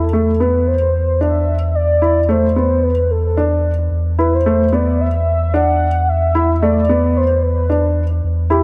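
A straight 4/4 pulse at 111 BPM carries this short, intimate and hypnotic piece of piano and strings electronica, cut from a longer piece and tuned to A4 = 443 Hz. A dark, woody upright piano with audible action noise and a slightly detuned, worn character repeats a riff between A3 and E4 through delay, while a round sine sub bass sits deep on E2, fattened by tube saturation and a little louder than the other parts. Over them a velvety, detuned unison synth lead sings a melody from G4 to F#5 with vibrato, portamento, chorus and delay, all in a small room with light reverb.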